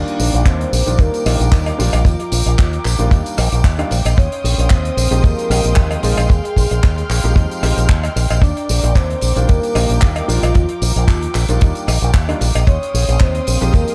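A damped 70s kit of handclaps, hi-hat, rim click and tambourine opens at 113 BPM in 4/4 with a light 16th-note swing, soon joined by a tight, dry kick up front, plus a background cowbell with maracas and tape echo. This feel-good, groovy nu-disco excerpt in Eb major alternates Ebmaj7 and Dbmaj9#11 under a bright, saturated envelope-filtered fingered bass that pumps with the kick. A round, dark octave-layered synth lead carries the melody through chorus, phaser and analog delay, over an intimate baby grand piano with audible action noise and long sustain, and a smooth string section with light vibrato, the piano and strings both roughened by 12-bit sampler grit in an echo-heavy studio reverb.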